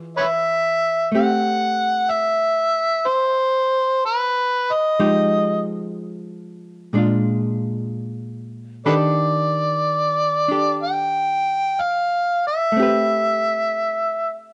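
A dark, intimate studio sound with moderate reverb frames this romantic jazz ballad at a slow 62 BPM in 4/4 with swung eighths, cut from a longer piece. A clean, hollow-bodied electric archtop guitar, picked and miked up front, carries the accompaniment through harmonies moving from E7b9 and Am7 to Fm9, Bb7 and Ebmaj7#11 before settling on Am9. Over it an amplified, overdriven harmonica sings the solo melody in a gritty jazz voice, bathed in plate reverb, with light vibrato and tongue slaps.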